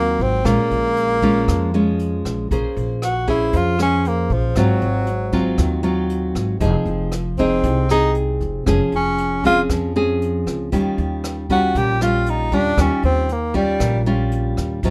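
A straight bossa nova groove in 4/4 rests on brushes, hi-hat, rim clicks and a boomy kick from the drum kit, with a woody, thumpy pizzicato upright bass underneath. Up front, a fingerpicked nylon-string guitar in classical style moves through chords such as Bbm9, Ab6, Fm7 and Eb9, while a warm tenor saxophone with vibrato and subtone carries the melody and takes a jazz solo from 2.5 s until it drops out at 14.0 s. The wistful, smooth mood sits in light reverb, and this is a cut from a longer piece.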